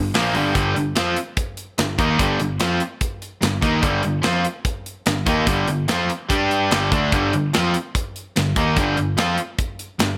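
Heavy and aggressive, this short hard rock passage, cut from a longer piece, charges ahead at 146 BPM in a straight 4/4, planted firmly on a G minor chord. Two picked electric guitars carry the riff together across the full ten seconds: one crunchy and overdriven, sitting up front with a bright edge, the other distorted, compressed and scooped for a heavier, hollowed-out bite. Beneath them a picked electric bass adds a punchy, amped low end in the G1 to G2 range. A tight metal drum kit enters at 0.1 seconds, its hi-hat, tight kick and medium-tuned snare placed mid-forward and up front in a studio-room sound. Light reverb and small room ambience give the dense, driving mix a touch of space.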